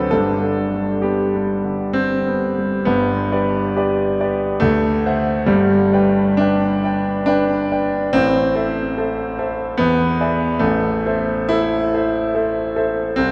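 In a flexible, rubato triple metre at roughly 62-75 BPM, this brooding, passionate romantic character piece for solo piano unfolds in G major, drifting through harmonies such as D9, Am and E7. The concert grand sits up front with a clear, natural tone, deep bass and long sustain across its span from G1 to G5, while a wet church reverb with a 3.5-second decay surrounds it. The brief opening passage gives way at 2.9 seconds to a contrasting second section that carries through to the end of this fragment from a longer work.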